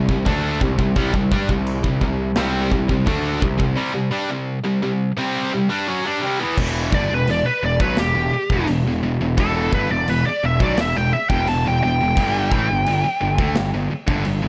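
Heavy metal at 86 BPM in E minor, heavy and relentless, where a high-gain distorted guitar, a tight distorted guitar that drops out at 6.6 seconds, and a growly fuzz bass drive the riff over a punchy big rock kit with china and crash cymbals, before a bright high-gain lead guitar solo enters above them from 6.9 seconds, all dry and up front in this cut from a longer piece.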